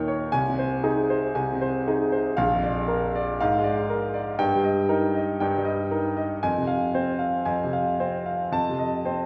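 Bathed in the lingering reverb of a recital hall and softened by rolled-off highs, this brief cut from a longer romantic character piece for solo piano presents an up-front concert grand with deep bass and a smooth, vintage tone, played with passionate, hopeful rubato through harmonies moving from Ab/C and Bb7/Ab to Eb/G, Fm and a closing F7 near 8.5 seconds.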